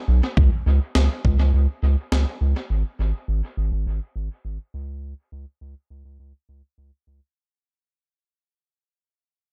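Driving and cool, this brief synth-pop fragment at 103 BPM sets a deep, nasal analog bass sounding between G#1 and C#2 against a gritty, compressed breakbeat kit with a thumpy kick and high-tuned snare trailing dub echo, the drums playing only from 0.4 to 2.3 seconds in a dry, echo-heavy mix that fades out across its length.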